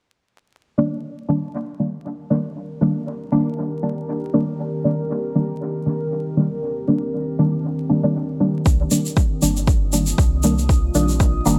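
A nasal, dark chord stab on Cm7 opens this meditative dub techno excerpt in C minor at 118 BPM with 56% swing, sitting up front at 0.8 s under a filter sweep, phaser, chorus and dub echo, before a detuned sawtooth ambient pad with slow attack, chorus, reverb and sidechain pumping settles in at 2.0 s, and at 8.7 s an overdriven, layered kick, a round, soft sub bass and a grainy, bright tube shaker join over a light reverb and a bed of vinyl crackle.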